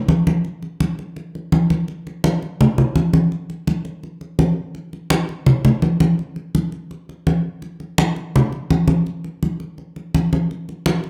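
Latin percussion with a sunny, joyful mood, this short cut from a longer piece moves at a brisk 167 BPM in a straight 4/4 feel. Congas carry the whole passage from 0.1 to 11.1 seconds, sitting up front in the mix. Their low-tuned, thick-skinned heads sound warm and damped, giving each stroke a rounded, acoustic body. Close, detailed microphones capture the drums in a live room, while a moderate large-studio reverb with a 1.1-second decay adds space around them. The passage shifts into a new section at 4.8 seconds and keeps its bright, celebratory energy to the end.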